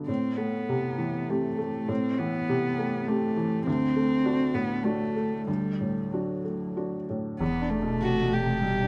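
A rubato 3/4 pulse at 92-103 BPM carries this fragile, melancholic neoclassical piano and strings fragment, where a soft, felt-muted upright piano sits up front beside a woody cello bowed sul tasto with vibrato over Am7 and D7, a round sine sub bass arrives at 7.4 s on Em7, and a dark, intimate violin with light vibrato takes the melody from 8.0 s, the whole set in light reverb in an open outdoor space.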